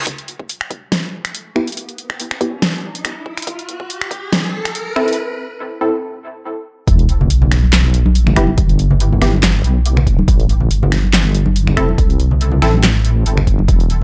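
A half-time 4/4 groove at 141 BPM with a light 16th-note swing drives this cavernous, heavy deep dubstep cut in E minor: a reverse cymbal, riser and sub drop lead into the drop at 6.9 s, while a tape-tinged kit of finger snaps, handclaps, bright filtered hats and a huge filtered snare runs beside a punchy, layered kick. A muted, detuned chord stab with chorus and dub echo moves between Em and Am under a filter sweep, and from 6.9 s a deep, dark sawtooth-and-sine wobble bass sits up front while ringing, dry congas with dub echo play in the background under light reverb.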